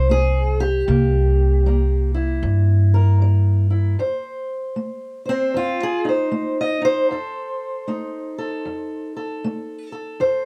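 Rollicking and soulful, this short fragment of acoustic country blues swings at 77 BPM in F mixolydian, moving from F7 to C7 and back to F7. A boxy, fingerpicked parlour steel-string guitar carries the melody up front throughout, while a woody pizzicato upright bass plays beneath it until 3.9 seconds, after which the guitar continues alone. Light reverb and a dark, warm production round out the duo.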